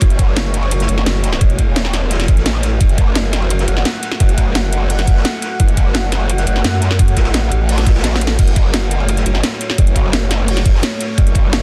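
A straight 4/4 pulse at 172 BPM drives this tense, aggressive slice of dark technical drum and bass in F# minor, resting on a single F# minor chord throughout its 11.6 seconds. An electronic kick with a knocking, layered punch sits up front and carries through to 11.4 seconds, joined by a produced drum and bass kit with a cracking snare, metallic hi-hats and crash cymbal, and a brief drum fill arrives from 8.0 to 8.4 seconds. Behind them, an acoustic breakbeat kit recorded in a small room adds hi-hat, ride and a medium-tuned snare, its gritty, saturated tone rolled off at the top, high-pass filtered and kept in the background. The growl bass dominates the low end from E1 to F#2, a distorted, wobbling, formant-filtered sound thickened with chorus and tube saturation and shaped by sidechain pumping. Above it, a deep, moody ambient pad holds sustained chords from A3 to F#5, its detuned sawtooth unison and sub octave softened by a slow attack, chorus and reverb. 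The whole is pressed into a dense, heavily limited modern master.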